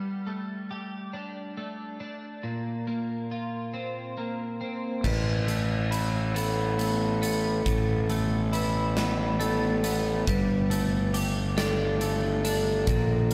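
In a straight 6/8 lilt, this melancholic, cathartic post-rock passage opens with an up-front, clean, compressed twelve-string electric guitar picking chorus- and delay-tinged arpeggios over suspended chords, and at 5.0 s a ringing, metallic vibraphone struck with hard mallets adds delayed arpeggios of its own, joined by a growly, fuzz-overdriven fingered bass and a huge arena drum kit with bright cymbals, a punchy kick and a medium-tuned snare in a pumping hall, the dreamy mix soaked in plate reverb.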